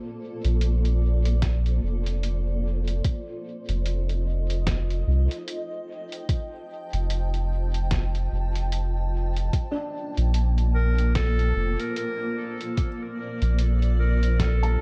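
Spacious and peaceful, this ambient dub excerpt moves at 74 BPM in 4/4 with a swung sixteenth-note feel, set in a dark, digital ambience. A cloudy, detuned granular pad opens at 0.0 seconds, sustaining blurred, evolving chords through Bbmaj7 and F7 with its own built-in reverb. A deep, round sub bass sits up front from 0.4 seconds, joined by a muffled, tape-warm sampler-style kit of hi-hat and fat snare, dressed in small room reverb and dub echo, while a soft electronic kick arrives at 1.4 seconds. A felt-muted upright piano enters in the background at 9.7 seconds with mellow, boxy arpeggios carried on dub echo. A bright clarinet then takes a brief classical-style solo melody at 10.7 seconds, also trailed by dub echo, over the Bbmaj7 that returned at 9.5 seconds.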